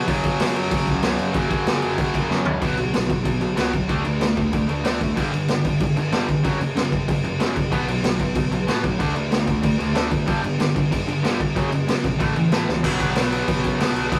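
A straight, driving 4/4 at 188 BPM powers this urgent, angry punk rock excerpt in B minor, cut from a longer piece, with a raw garage drum kit up front: boomy kick, medium-tuned snare, crash and toms sound gritty and saturated in a small room, and fills land at 2.3 and 12.7 seconds. Two bright, overdriven electric guitars hammer out picked riffs in the background, while a dark, round picked bass sits beneath them as the power chords move from F#5 through B5, D5 and G5 before a brief A chord at 12.2 seconds. The rough rehearsal-room recording carries light reverb and warm saturation.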